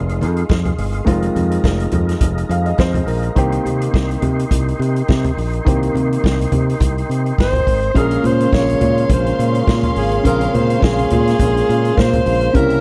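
Driving and danceable, this disco excerpt at 104 BPM with a light sixteenth-note swing rides a punchy, up-front fingered electric bass and a vintage drum kit with hi-hat, kick and snare, while low-tuned congas sit in the background, a deep-voiced concert grand piano comps and adds a fill at 2.2 seconds, and a dark, lightly overdriven tonewheel organ holds sustained chords through chorus vibrato and a fast rotary speaker over Fm7 and Cm7 before the breathy, intimate alto saxophone enters at 7.4 seconds and a lush, woody string section follows with a second line as the harmony moves to Bbm9 in a dry, close 1970s-style studio sound.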